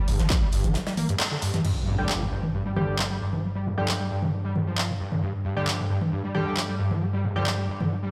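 Driving peak-time techno with a relentless, industrial mood, this straight 4/4 clip is cut from a longer piece and sounds as if it were played on a big sound system in a bare room, wrapped in a lush hall reverb. A screaming, squelchy acid line with a resonant filter sweep runs through the whole stretch as the up-front riff, distorted and thickened by ensemble chorus and sidechain pumping. An overdriven, layered electronic techno kit of crash, handclaps, hi-hat and toms drives it, with a very quiet small-room acoustic kit adding hi-hat and a medium-tuned snare underneath. A deep, thick, saturated sub bass hits only briefly at the start, and after a break and a band accent an electronic impact lands at 1.6 seconds. From 2.0 seconds an edgy sync-sweep polysynth adds nasal, wave-folded stabs with dub echo, while a mellow, warbling vintage drone with slow attack and long release settles in beneath from 2.1 seconds.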